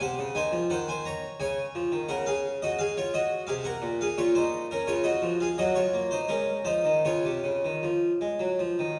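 A solo harpsichord, airy and plucked with a full Flemish-style voice from its two sets of strings, sits up front yet is heard from further back in a wet recital hall, carrying a grave, flowing baroque-style suite movement in 4/4 with rubato, its nine-second span moving from Cm7b5 to Db and closing back on Db after Ebm/Gb and Ab.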